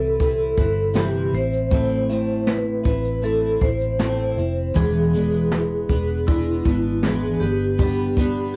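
An up-front jazz brush kit with a boomy kick, shaker and medium-tuned snare carries the cassette-tape grain of this easy-going, heartfelt acoustic pop excerpt, recorded at home with little reverb. A full-bodied, double-tracked jumbo steel-string guitar plays picked accompaniment over a round, punchy, foam-muted vintage electric bass. A smooth, dark vibraphone with a fast motor vibrato adds a ringing second line through the Cmaj7, Amadd9, E7 and G changes.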